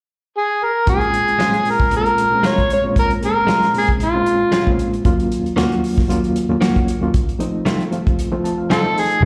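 A gritty, amplified harmonica opens this soulful, smoky soul blues at 0.4 seconds, playing an up-front jazz-style solo with scooped notes, tongue slaps and light vibrato, touched by slapback echo. At 0.9 seconds an overdriven reed electric piano and a soul drum kit join. The piano sounds reedy through a combo amp, with fast tremolo and its own slapback echo, while the small-room acoustic kit pairs a punchy kick and medium-tuned snare with hi-hat in a dark, smooth tone. A bright, clean electric guitar, recorded direct and compressed, adds picked stabs from 1.4 seconds with slapback echo, sitting lower in the mix. The straight-eighth groove moves at 115 BPM in Bb minor over Bbm7, Ebm7 and F7. The harmonica drops out partway and returns near the end as the electric piano plays a fill, all heard as a live club gig through the venue's PA with light reverb.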